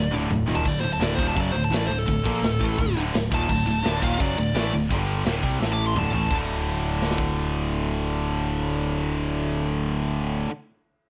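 A tight metal drum kit drives a straight 4/4 at 170 BPM, rolling in with a fill of crash, kick, snare, ride and toms; its sound is mid-forward and rounded off at the top, with a medium-tuned snare and a tight kick. This is a relentless, dark heavy metal fragment in D phrygian dominant, cut from a longer piece. Three rhythm guitars churn the low riff together: a bright heavy high-gain part, a tight distorted part, and a very quiet, double-tracked overdriven stack, all picked. A picked electric bass holds down the bottom with a growly, punchy tone. Over them a dusky lead guitar solos in a high register through distortion and digital delay, with the chords moving from G5 through D5 and A5 before the solo stops at 6.3 seconds. The drums fill once more and drop out at 7.3 seconds, leaving the riffing guitars and bass in a light reverb to carry on toward 10.5 seconds.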